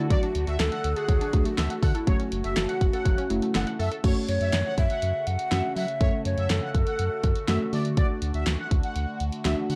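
A straight 4/4 synth-pop groove at 122 BPM, with a punchy, up-front electronic drum kit of kick, fat snare, hi-hat and crash, sets a nocturnal, cool mood in F# minor over chords moving from D to F#m. A round, deep analog bass and muted, felt-like synth keys hold the accompaniment beneath a swirling, phased pad in the background, while a bright, detuned analog pluck plays arpeggios until 4.0 seconds. An airy, hollow tenor recorder with chiff and vibrato carries the melody through delay until 7.7 seconds, alongside a bold, brassy synth second line, all on a gritty cassette-tape recording with light digital ambience.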